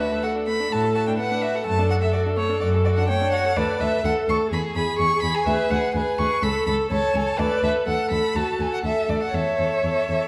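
Spirited and lively, this quick classical-period movement for string quartet moves at 125 BPM in a straight 4/4, opening in D major before turning toward A major from 3.6 s. The first violin carries the melody up front between C#5 and C#6, its rich, expressive tone shaded with vibrato and portamento. A second violin plays a distant supporting line from A3 to A4, while the viola adds a dark, woody accompaniment between F#4 and C#5, also set back in the mix. The cello anchors the bass close and up front, smooth and even from C#2 to A2, each instrument played by a single bowed player. The harmony passes through chords such as Bm7/D, E13/D and A/C# before settling on A/E at 9.3 s, all heard in a wet recital hall with a reverb tail of 1.5 s in this short cut from a longer work.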